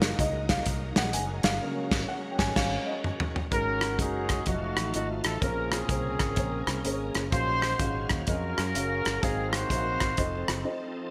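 A bright 1980s-style digital production bathed in lush hall reverb carries this uplifting, soulful swung gospel excerpt, where a dark, woody upright piano with subtle chorus accompanies while a shouting, lightly overdriven tonewheel organ on fast rotary speaker holds sustained chords alongside a very quiet, mellow French horn section, over round fingered electric bass and an up-front soul drum kit with gated reverb and a tight kick, before a smooth pop-style horn section takes the melody through digital delay at 3.5 seconds, ending with a brief break at 10.7 seconds.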